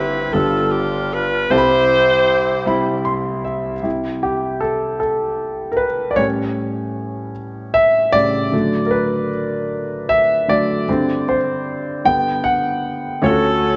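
Gospel in 6/8, jubilant and soulful, cut from a longer piece. A close-miked saxophone section carries the melody up front, punchy and tight with pop-style vibrato, stating it at the opening before dropping out at 3.1 seconds and returning briefly at the very end. A concert grand piano accompanies throughout, intimate and natural with deep bass and audible action noise, adding a fill before taking a solo from 3.9 to 13.2 seconds. The harmony moves through rich chords such as G9, Cmaj7 and A7, reaching Gsus4 and then G before a closing Dmaj7. A moderate scoring-stage reverb surrounds both parts, and the sound is cut off above 8 kHz.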